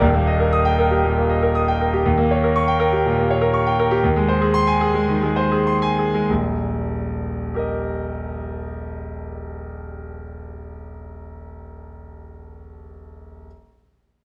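Classical virtuoso piano study in Eb major, sparkling and brilliant, played in 4/4 with a rubato feel at a tempo that moves between 92 and 122 BPM and slows from 1.0 to 6.3 seconds. A bright concert grand piano plays solo and up front, spanning Eb1 to Eb6 with deep bass, an open tone and long sustain, as the harmony passes from Eb through Eb7 and Ab/Eb before settling back on Eb at 6.3 seconds. A moderate recital hall reverb surrounds the instrument in this excerpt cut from a longer piece.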